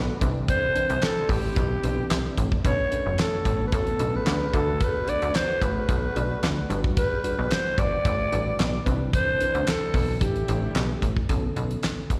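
Early-eighties boogie funk with a feel-good, smooth mood, this short cut from a longer piece moves in a straight 4/4 over a chord cycle that runs Cmaj9, Bm9, D6 and Gmaj7 before turning through A7sus4. A breathy, raspy alto saxophone carries the melody up front with vibrato and a slapback echo, gritty in tone yet smooth at the top, and it drops out at 11.0 seconds. Beneath it, a worn, slightly out-of-tune tine electric piano comps with light overdrive and its own slapback echo, while a lush, detuned unison pad holds airy sustained chords in the background through chorus and phaser. A plucky, nasal analog bass with a fast-attack, decaying filter pluck punches up front, and a damped 70s drum kit, entering at 0.2 seconds, brings a fat snare, tight kick, hi-hat and handclaps in a dry, mid-forward sound. The whole performance comes across as a live gig heard through the venue's PA, with small room ambience and recital hall reverb around it.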